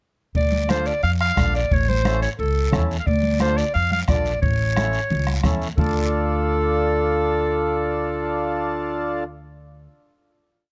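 A clarinet in a classical style leads this short, danceable cumbia, its distant, roomy tone carrying a solo melody built from short call phrases over a D harmonic minor groove at 178 BPM in a straight 4/4. Beneath it, a reedy, full accordion plays rhythmic triad chords up front, while a woody upright bass, plucked on steel strings, drives a cumbia bass figure through the Dm and A changes. The percussion is driving and acoustic: a bombo with a soft beater strikes kick and rim, a raspy guiro scrapes long and short strokes, and bright, damped congas sit in the background with off-beat high and low hand drums. The groove runs from 0.4 seconds until 5.8 seconds, when the band settles on a final D minor chord; the percussion drops out just after, at 5.9 seconds, and the bass sustains to 9.9 seconds. The sound is a dry, close 1970s-style studio recording with a small room reverb.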